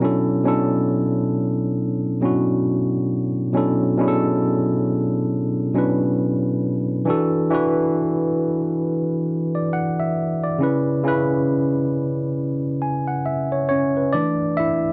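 A slow 68 BPM groove in 4/4 with a lazy 16th-note swing sets up this sultry, soulful R&B excerpt in B minor, carried by a lone tine electric piano that sits up front, slightly out of tune and lightly overdriven as if heard through built-in speakers. Its chords move from Bm11 to E9sus4 at 7.1 seconds, then C#m7 and finally E7sus4 at 14.1 seconds, spanning B2 to G#5. Light reverb and the warbly pitch drift of worn cassette tape give the whole passage a faded haze.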